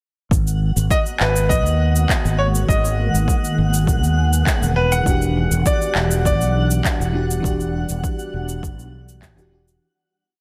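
A relaxed sunset chillout piece at 101 BPM in straight 4/4, where a punchy yet soft electronic kick and a light lounge beat of shaker and handclaps start at 0.3 seconds alongside an up-front, bright fretless electric bass in a dotted rhythm, soon joined by a twinkling granular texture holding a high F#5, a brilliant grand piano carrying a free, delayed melody, and a shimmering, ethereal pad with chorus and phaser, before a round, mellow FM electric piano enters at 5.0 seconds with spread chords and syncopated pushes as the harmony moves from G#m9 to Em9 and the track fades out from 6.7 seconds.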